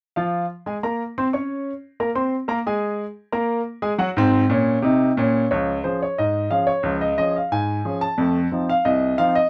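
Ragtime piano in Db major at 90 BPM in a straight 2/4, this cheerful, playful excerpt cut from a longer piece features a clear, up-front grand piano playing solo from 0.2 to 9.5 seconds across a range from C2 to Db6, with light reverb and a harmony moving through Db, Ab and F7 as the music shifts into a new section at 5.5 seconds.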